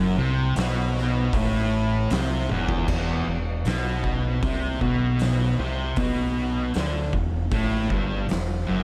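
A double-tracked fuzz guitar riff and a growling, overdriven fingered bass open this ominous, brooding stoner and doom metal passage in E minor at a slow 78 BPM, the compressed guitar sitting up front over the round, punchy low end. An oversized, low-tuned acoustic kit joins at 0.6 seconds with a fat snare, punchy kick, hi-hat, crash and toms, its gritty, saturated tone set in a bright stone room. A drum fill at 2.5 seconds leads from the opening power-chord figure into a second section on E minor, all under a light studio reverb.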